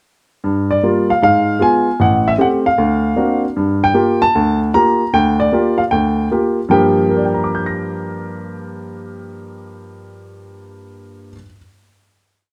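Solo jazz in G minor, this brief, complete piece has a late-night, moody air, swinging at 153 BPM in 4/4. A single upright piano carries everything from 0.4 seconds to 11.6 seconds, its woody, intimate tone placed up front with the mechanical noise of its action clearly audible. The melody is built from short motifs in call-like phrases, set over a stride bass and close voicings that move from Gm7 through Abm6, Am7 and D7alt before returning to Gm7. After the opening statement, the piece settles onto a final chord at 6.7 seconds. Close, detailed microphones capture the instrument's natural character, while a moderate large-studio reverb gives it a sense of space around it.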